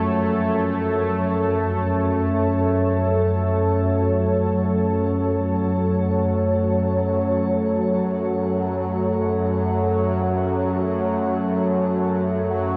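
Dark ambient drone in free time, this cavernous, desolate passage is cut from a longer piece and sits on a single F# minor chord throughout. An evolving analog drone holds the low end, its detuned sawtooth and pulse-width-modulated tones wave-folded and treated with chorus, fading in slowly and sustaining up front. Above it, a deep, moody pad spreads sustained chords with a sub octave and detuned unison voices, darkened further by chorus and shimmer reverb. Barely audible carillon bells ring bronze, bright arpeggios over the opening, close-miked and dry with a worn iron clapper, until they stop at 4.9 seconds. From 0.8 seconds a mellow, bubbling texture of random resonant filter steps fades in behind, and the whole sits in a huge, wet reverb that lingers for seconds.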